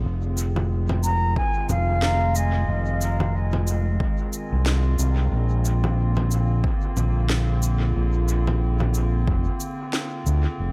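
A warbling, detuned pad and a dark, overdriven fingered electric bass open this hazy, spacious ambient dub excerpt, the pad holding nostalgic, lo-fi sustained chords with chorus and its own reverb while the round, amped bass sits up front. Electronic shaker, congas and a woody snare arrive at 0.4 seconds, tape-tinged and re-recorded in a large room, trailing dub echo behind them with a loose swing. A mellow concert flute floats in at 1.0 seconds with an airy, straight-toned, soft-attacked line that sounds distant and carries its own dub echo before it ends at 3.7 seconds. A punchy, layered electronic kick drum enters at 1.4 seconds, overdriven and pushed forward in the mix. The harmony moves from Fm7 to Bb9 beneath a digital ambience, and the passage is cut from a longer piece.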